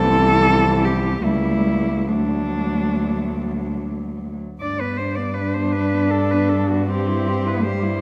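Tender and warm, this lyrical classical passage for four muted cellos, cut from a longer piece, moves in a rubato triple metre. A close, up-front melody cello sings with vibrato and portamento over a second line set in the background and a lightly vibrated accompaniment, while a bowed bass cello with vibrato sits up front beneath them. All four share a dark, veiled con sordino tone in a moderate concert-hall reverb, and the harmony moves from C through C#dim7 to D before settling onto G at 4.6 seconds.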